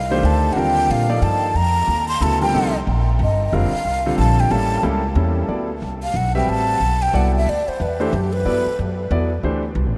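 A swung 3/4 lilt at 183 BPM carries this spiritual, open jazz excerpt, where a woody, dark pizzicato upright bass and a clear concert grand piano with deep lows support a breathy, hollow flute whose tongued, vibrato-laden melody drifts through diffuse ambient delay, moving from F mixolydian to D mixolydian as it takes a solo at 5.5 seconds, all inside a dreamy mix soaked in a huge 7.1-second reverb.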